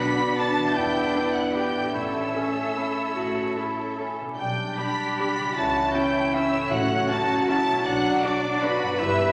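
A violin section carries the melody high above this elegant, festive orchestral ballroom waltz, its bowed tone rich and focused with vibrato, set at a distance in the hall. The waltz moves in three with a flexible, rubato feel. Around it, a pure, metallic flute with expressive vibrato, a clear, roomy clarinet, a warm oboe with light vibrato and a lush second violin section weave supporting lines. A mellow French horn section holds sustained chords with a soft attack, while a very quiet viola section and a ringing, fingerpicked harp fill in the accompaniment in the background. Cellos with a clear, focused tone and a smooth, even double bass section, entering at 0.7 s, anchor the low end. Round, soft-mallet timpani on calf heads sound briefly at 6.7 s, and the whole short passage sits in a wet concert hall reverb with a layer of vinyl crackle, cut from a longer piece.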